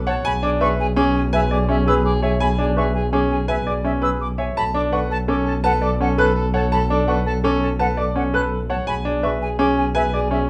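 Minimalist classical pattern music at 167 BPM in 6/4, this meditative, hypnotic passage cut from a longer piece sits over a bowed double bass, warm and expressive with vibrato and portamento, holding a low B while the harmony shifts from E7/B to Bm7 at 4.6 seconds and back. A clear baby grand piano carries the short-sustained melody as a polished concert grand piano with deep bass spins arpeggios beneath it, and a pure, metallic concert flute adds tongued, higher arpeggios with vibrato from a distance. A mellow soprano saxophone contributes a distant second line with light vibrato, all set in a moderate large-studio reverb.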